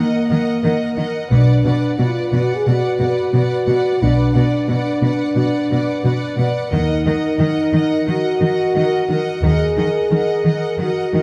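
Cut from a longer cinematic cue, this dark and relentless passage opens with an expressive violin section singing a high melody with vibrato and portamento over a lush, distant second violin line, woody violas, mellow close-miked French horns holding sustained chords and smooth, up-front cellos, while a bowed double bass section joins at 1.3 seconds and drops out at 9.8 seconds, all shifting from Ebm to Bm and back to Ebm inside the reverberant bloom of a scoring stage.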